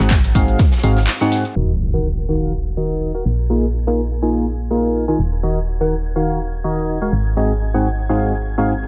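Piano house at 124 BPM in Eb dorian with a light 16th-note swing, energetic and soulful, this excerpt rides a hollow, up-front organ stab riff with chorus, tape echo and sidechain pumping over a round, dark FM bass and a tape-warm analog drum machine of cabasa, handclaps and filtered hi-hats, while a punchy electronic kick and an airy, big-room snare and shaker drop away by the close of a break that begins at 1.1 seconds, after which an electronic impact lands at 1.6 seconds and a lush, biting string section enters in the background under a long filter sweep as the chords move from Ebm through Bb7sus4 to Ab7.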